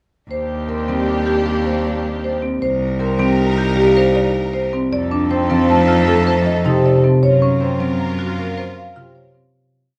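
A soft-mallet marimba carries the melody of this short, hypnotic minimalist classical piece, its round, airy, mellow tone on rosewood bars repeating a short cell within a range of G4 to Bb5. Set in Eb lydian at 156 BPM in a straight 6/4, the music has a bright, steady pulse. A second marimba with medium-hard mallets joins at 0.9 seconds with darker, smooth arpeggios on its own repeated cell. A fingerpicked concert harp adds a ringing accompaniment figure, while a lush, distant symphonic string section holds swelling, bowed chords with even vibrato. Underneath, a single focused cello sits up front, bowing long bass notes with a smooth top. Light reverb surrounds the ensemble as the harmony moves from Ebmaj7 through Cm7 and F7 to Gbmaj7, and the whole piece fades out from 7.2 seconds to its end at 9.5 seconds.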